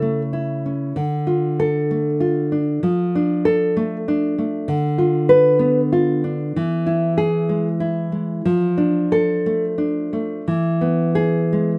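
A light reverb surrounds this short, intimate recording, with the nylon-string guitar sitting up front as if played live in a single room. It is a melancholic, romantic piece for solo classical guitar in 6/8, taken with a free, rubato feel. The guitar carries everything alone from 0.0 to 11.8 seconds, its deep, warm classical tone shaped by thumb-plucked notes, with finger squeak adding a close, human touch. Its range stays between C#3 and B4. The harmony moves from A/C# to Dm, then through Dm/F and Bdim/D to E at 6.6 seconds, before returning to Dm/F and settling again on E. The fragment is cut from a longer piece and ends on that unresolved E chord.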